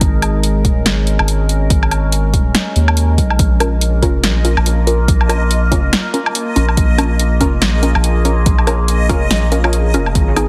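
Dark and heavy, this deep dubstep excerpt at 142 BPM in Bb minor rolls in a swung half-time feel, with a round, soft sub bass and a deep overdriven electronic kick anchoring a punchy deep house kit of hi-hat, snare and woodblock, while a resonant drone with moving overtones holds sustained chords under chorus, phaser and reverb, muted detuned dub chord stabs with phaser and dub echo arrive at 3.6 seconds, and a reversed, dreamy granular texture joins at 4.4 seconds, all pressed into a heavily compressed radio-like sound with light reverb.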